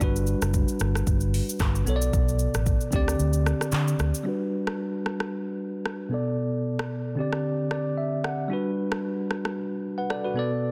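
A lightly swung sixteenth-note afrobeats groove sets a breezy, joyful mood in this short cut, as an up-front electronic afro-pop kit of deep kick, metallic hi-hat, handclaps, rim click and shaker, with soft clipping on the snare, plays alongside a round, punchy, foam-muted vintage fingered electric bass that drops out at 4.1 s, while a bell-like, bright, clean tine electric piano under a low-pass filter moves through Gmaj7, Bm7 and D7sus4, gains a filter sweep from 4.3 s and plays a fill at 7.4 s, the whole sitting in digital ambience with a dense, heavily limited modern master.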